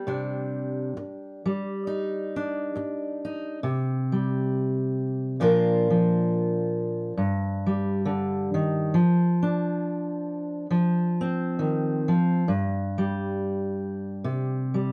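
A lone fingerpicked steel-string acoustic guitar, full-bodied and up front with a dreadnought's depth, opens this wistful, melancholic folk excerpt at a slow, gently swung pace, moving from a Cmadd9 chord into open fifths, Bb and Dm/F harmonies, a brief chordless passage at 12.5 seconds, and back to C in a modest studio room ambience.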